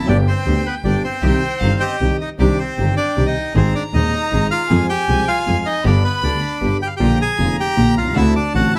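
Set in a moderate studio reverb, this short passage from a longer tango in C minor sounds dramatic and tense, moving at 156 BPM in 3/4 with a rubato feel. A reedy, bright bandoneon sits up front carrying the melody, while a single distant bowed violin adds a second line with vibrato and expressive portamento. A vintage concert grand piano supplies smooth, warm accompaniment reaching down into deep bass, and one bowed double bass anchors the low end with a clear, focused tone and vibrato. From 0.1 s a very quiet chamber string section plays dark, veiled stabs con sordino, with soft attacks and light vibrato, sounding distant beneath the others. The harmony passes from G and C minor through Ab, F minor, G again and Bb before closing on D7 at 8.2 s.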